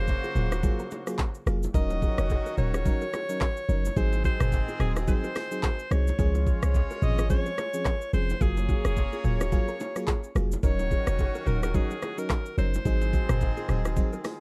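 A breathy, edgy alto saxophone carries the pop-style melody with scooped notes and a touch of delay, shadowed by a loosely played horn section in octaves with light vibrato in this breezy, romantic afrobeats excerpt at 108 BPM with a 16th-note swing. Glassy, bell-like FM electric piano with chorus and a dark, clean electric guitar riff with spring reverb and delay sit over a deep, boomy 808-style bass and an up-front electronic drum kit of knocking kick, hi-hat, handclaps, rim click, shaker and toms. Very quiet bongos and congas fill in behind, and the whole mix is dark and dry as the chords move from Ebm7 through Ab7, Dbmaj7 and Gbmaj9.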